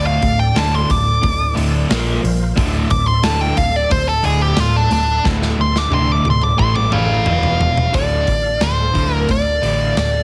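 A straight 4/4 pulse at 89 BPM drives this heavy hard rock passage in D minor, where a nasal, dark lead guitar with a parked wah solos up front over two picked rhythm guitars in the background (one cranked and bright, the other crunchy with a phaser), a round hollow-body short-scale bass, a very quiet, gritty tonewheel organ holding sustained chords through a slow rotary speaker, and a punchy big-room drum kit that enters at 0.2 seconds and plays a fill from 5.2 to 7.9 seconds, the whole mix sitting in light small-room reverb with a heavily compressed radio sound.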